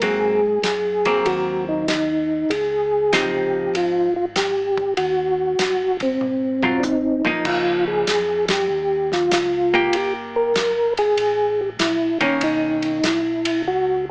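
Heard through light reverb and a small-speaker tone, this soulful, swinging soul jazz organ trio clip puts a soft, flute-like percussive tonewheel organ melody with slow rotary speaker and chorus vibrato up front, beside dark, compressed, picked hollow-body jazz guitar accompaniment, while a round, key-clicking tonewheel organ carries the bass and an acoustic soul drum kit with dark cymbals and a tight kick plays a fill at 6.2 seconds before a band accent lands at 8.4 seconds.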